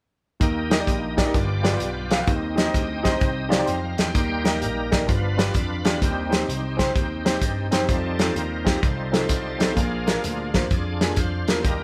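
Soulful and jubilant, this uptempo gospel excerpt swings in 4/4, with the full band playing live together in one large studio room with a moderate reverb. A warm soul drum kit sits up front, its tight kick, medium-tuned snare and hi-hat sounding mid-forward with a rolled-off top. Underneath, a vintage electric slap bass comes through amped and punchy, while a clear concert grand piano with deep bass and short sustain supplies the accompaniment, moving through Eb, G7 and Cm before slipping in a fill from 3.2 to 4.2 seconds. A bright tonewheel organ holds sustained chords through a slow rotary speaker, light overdrive and chorus vibrato, then takes a full, shouting solo from 4.2 seconds to the end as the harmony moves through F7 to Bb.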